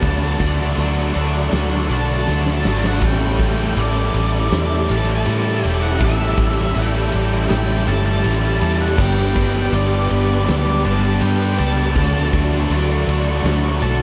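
A round, foam-muted vintage bass sits up front in this blissful, dreamy shoegaze and dream pop excerpt, under a huge arena drum kit with a fat snare, punchy kick and bright cymbals, a drum fill at 2.3 seconds, and a jingly tambourine tucked behind. Two biting overdriven guitars play riffs in the background, one with subtle chorus and the other with reverse reverb, while a very quiet double-tracked distorted guitar riffs only until 3.0 seconds. A dark octave-fuzz lead guitar with tape echo carries the melody over mellow string-machine cellos with ensemble chorus, all soaked in a huge ambient reverb.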